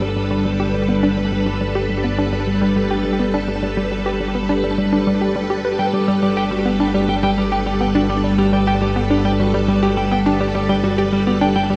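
Over a steady, straight 4/4 pulse, this luminous, expansive piece of ambient, sequencer-driven space music sits on a single G chord for its whole span, a short cut from a longer work. A lush string machine playing as a full ensemble holds sustained chords up front, its vintage sawtooth tone thickened by ensemble chorus and a slow attack. Beneath it an analog drone hums on a low G, warbling and evolving with pulse-width modulation, chorus and tube saturation, while a hollow, bouncy square-wave pluck repeats a riff through chorus and analog delay. At 5.8 seconds a clean, dark electric guitar enters with picked arpeggios trailed by analog delay. The whole mix is soaked in a cathedral reverb with a 5.2-second tail and carries a dreamy cassette-tape character.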